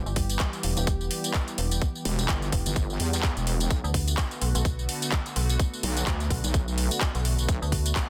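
A sweeping, resonant pad and a heavy wobble bass open this bouncy, gritty bass house excerpt together, with a metallic FM bass and a garage drum kit joining by 0.1 seconds and an electronic kick drum by 0.2 seconds. At 127 BPM in 4/4 with a 16th-note swing of 57%, the groove sits in E minor, moving from Em to Bm7 at 3.7 seconds. The tight, up-front kick anchors a layered garage kit of handclaps, tambourine, woodblock and metallic hi-hats. Two basses share the low end: the wobble bass is detuned and saturated through tube warmth and chorus, while the FM bass adds a digital, decaying bite with overdrive, both pumping with sidechain compression. Behind them the pad holds sustained chords, evolving with ring modulation, a filter swell and chorus, its bright sawtooth body also ducking to the sidechain. The mix carries a digital ambience and a dense, heavily limited modern master.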